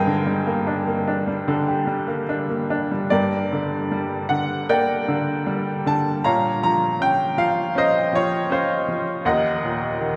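Reflective and dark, this lyrical classical passage for solo upright piano moves with a free, rubato feel in 4/4, its harmony shifting from G minor to B-flat minor with an added ninth at 6.2 seconds and settling on E-flat minor at 9.2 seconds. The piano sounds bright and woody, polished and up front, spanning Eb2 to Bb5 with long sustain. A deep cathedral reverb lingers around every note, placing the instrument in a church or concert hall, and the passage is cut from a longer piece.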